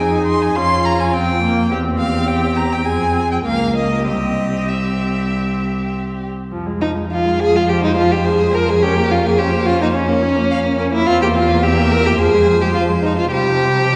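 This is a quick classical-period movement for string quartet in F minor, cut from a longer piece, with a stormy, restless mood. It moves at roughly 96-108 BPM in 4/4 with a rubato feel, and it is tuned to A4 = 439 Hz. The first violin carries the melody with a rich, smooth, even tone and vibrato, reaching up to C6. The second violin sits up front on the second line, playing expressively with vibrato and portamento. Beneath them, a distant viola supplies steady, vibrato-coloured accompaniment, while a warm cello anchors the bass with expressive portamento. All four bowed players sound throughout, heard from further back in a wet concert hall with a soft, rounded top, and the music turns from its opening section to a new one at 6.5 s before closing on a suspended chord.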